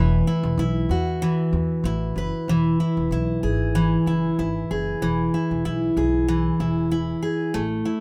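Pop in E major at 95 BPM with a light 16th-note swing, this carefree, sunny excerpt pairs a warm, up-front picked dreadnought steel-string acoustic guitar with a dark, woody pizzicato upright bass under light reverb, moving from Esus2 to E at 2.5 seconds, with the bass stopping at 7.8 seconds just before the guitar ends at 8.0.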